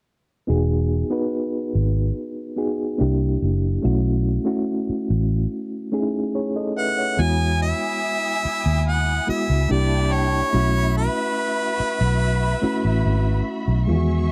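A clear, pop-style harmonica carries the melody from 6.8 s, its scooped notes and light vibrato sitting up front in this romantic, smooth piece of lush 1970s-style soul at 72 BPM in E major. Beneath it, a reedy, mellow electric piano with fast tremolo and a dark, round, foam-muted fingered bass hold the Emaj7, C9 and B7sus4 changes, while a focused, bowed symphonic string section with vibrato joins at 7.2 s as a second line. The dry, close studio sound carries light reverb, and the recording is cut from a longer piece.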